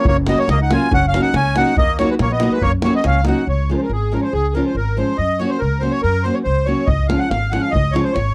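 An up-front, reedy accordion with light tremolo tuning carries the melody through this wild, exuberant Balkan wedding-band fragment at 141 BPM in 2/4, starting in F# major and shifting to Db major at 3.5 s. A dark trumpet with light vibrato plays a smooth second line until 3.4 s, while a woody, thumpy upright bass of gut strings anchors the low end and a fingerpicked nylon-string guitar adds bright, fresh accompaniment. A deep davul drives the first section, drops out, and returns at 6.9 s, all captured in a dry, close 1970s-style studio sound.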